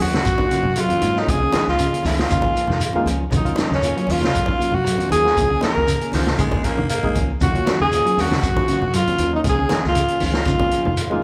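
A lightly swung groove at 118 BPM in 4/4 drives this intense, funky afrobeat excerpt in Eb minor, with a vintage acoustic drum kit of punchy kick, medium-tuned snare and hi-hat sitting mid-forward, its top rolled off. Low-tuned congas with thin skins and soft hands sit in the background beside a grainy, very quiet shekere, while a deep dub fingered bass, dark and foam-muted, holds down the low end. Up front, a raspy, gritty tenor saxophone carries the melody with forceful attack and light vibrato, trailed by tape echo, and a very quiet alto saxophone plays a second line. A raspy baritone saxophone briefly joins between 6.1 and 7.3 seconds, adding a present, bright low voice. Behind them, a barky, reedy electric piano comps through its built-in speakers, a clean picked guitar plays arpeggios, and a hollow-body guitar adds fingered stabs as the harmony alternates between Ebm9 and Db6, all set in a moderate large-studio reverb with the feel of a band playing live in one room.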